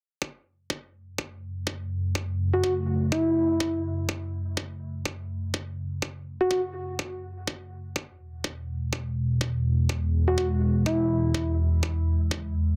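A detuned sawtooth pad and a layered, knocking electronic kick open this bouncy, swaggering bass house excerpt together at 0.2 s, moving with a swung sixteenth-note feel in four. The resonant pad holds sustained chords with a slow attack and long release, its filter sweeping across the whole passage while chorus thickens it and sidechain pumping makes it breathe against the beat. The kick sits up front with a small-room character, high-pass filtered on both the drum and its room sound. At 2.5 s a soft, round FM lead enters with a keys-like, fast-attack tone that decays, coloured by chorus, vibrato and a dub echo, and it returns briefly later for a short phrase. The harmony rests on F#m before shifting to E at 8.0 s, all set in a lush hall reverb inside a dense, heavily limited modern master.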